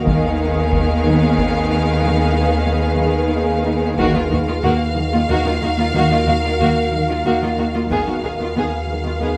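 A deep, rumbling drone and a dark, woody double bass section open this ominous, uneasy suspense film cue. Above them, bowed strings with vibrato enter at once: a violin section plays a lush melody on F5 over a second, focused violin line, a viola section plays a soft-attack accompaniment with portamento, and a distant cello section holds the bass, all under a cloudy, blurred granular pad. At 0.1 seconds a second cello section enters with an expressive riff in the background, and a compressed, saturated taiko ensemble with heavy sticks joins in triple metre, while the harmony shifts from a diminished chord over Eb to Eb minor with an added ninth and back, all set in a moderate concert hall reverb.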